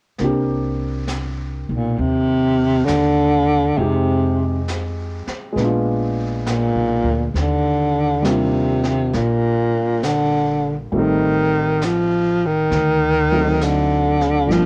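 Swinging gently at 67 BPM in 4/4, this intimate, melancholic jazz ballad in C minor moves through rich minor-key changes, opening on Cm9 and closing on D7b9. A dark, mellow grand piano and a woody, thumpy pizzicato upright bass carry the accompaniment from 0.2 seconds, with a brushed kit with a high-tuned snare and rolled-off top sitting quietly beneath. At 1.7 seconds a breathy baritone saxophone takes the lead up front, its whispered subtone, soft attack, scooped notes and vibrato colored by cassette tape and light reverb, in a home recording cut from a longer piece.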